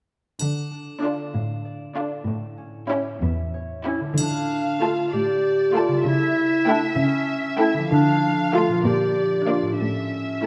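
Opening at 0.4 s on harp arpeggios, a dark, close cello section bass and a dry triangle, this quirky, sneaky D minor film cue in 6/8 at 64 BPM brings in a woody violin section melody at 1.0 s over floating sul tasto violins and violas, before a mellow, up-front solo clarinet joins at 3.9 s, everything bathed in a wet concert hall reverb.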